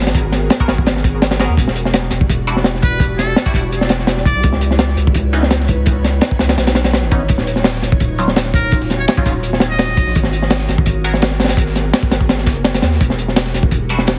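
A crunchy, up-front breakbeat kit with a punchy kick and high-tuned snare opens this dark, nostalgic drum and bass cut at 168 BPM alongside a deep, saturated sub bass, while a mellow, ethereal pad with chorus, tremolo and reverb sustains minor-ninth chords in the background, nasal band-passed stabs with phaser, tape colour and dub echo flicker through, a buzzy, metal-muted trumpet plays brief jazz-style phrases with light vibrato and dub echo at 2.8 and 8.5 seconds, and a gritty, high-passed sampler-style kit joins in the background at 7.3 seconds, all under a heavily compressed, radio-like sound in a small room.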